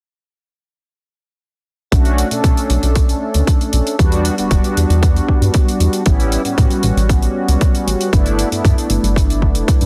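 A dense, heavily limited modern master sits in a small room reverb, giving this groovy, sensual nu-disco excerpt a tight, polished sheen. At 116 BPM in a straight 4/4 and in B minor, everything arrives together at 1.9 s and moves through a Bm7, Em7, A7 and G6 progression. A punchy, layered electronic kick drum sits up front with studio reverb, while a dry, airy hi-hat ticks far lower in the balance. Beneath them, a chorused synth bass blends pulse, sawtooth and triangle tones with ring modulation and wave-folding into a dark, glossy, retro voice with a plucky filter attack. On top, a round, brassy synth brass built from detuned sawtooths carries the accompaniment up front, colored by chorus, a filter sweep, sidechain pumping and dub echo. The kick drops out at 9.8 s, just before the other parts close at 9.9 s.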